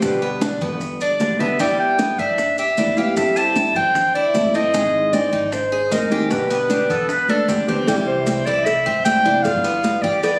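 A straight 4/4 groove at 153 BPM drives this relaxed Cuban son and guajira passage in C major, cut from a longer piece. The high-tuned congas sound thin-skinned and are played with soft hands, while round, low-tuned bongos and cowbell sit close and dry in the background, with a drum fill at 0.4 seconds. Grainy, mellow maracas add a faint small-room shimmer, and a woody, thumpy pizzicato upright bass anchors the low end. A dark, boxy fingerpicked nylon-string guitar carries the accompaniment as a Cuban tres picks metallic arpeggios on double strings, some of them octave-doubled. Up front, a clear, soft-attacked clarinet sings the melody in classical style with plate reverb, and an airy silver concert flute with vibrato, a crisp attack and a slightly unsteady tone adds a brief second line from 6.7 to 7.9 seconds. The harmony moves through G, G6, C6/G and Ab before settling on C and G7, in a phone recording made in the room, with moderate studio reverb and compression.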